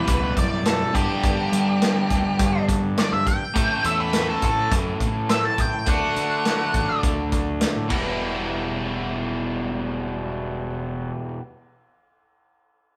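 Classic rock with a gritty, swaggering strut, this short cut from a longer piece opens with a dark, fuzz-soaked lead guitar soloing over a bright, crunchy overdriven riff guitar and a round, fuzzy fingered bass, while a vintage drum kit with punchy kick and dark cymbals sits up front. Beneath them, a very quiet fingerpicked twelve-string acoustic adds a shimmering, octave-doubled layer with audible finger squeak, as the chords move from Em through G, A and D. The lead drops out at 7.0 seconds and the drums at 8.0 seconds, leaving the guitars and bass ringing on in a moderate stone-room reverb that captures the band playing live together.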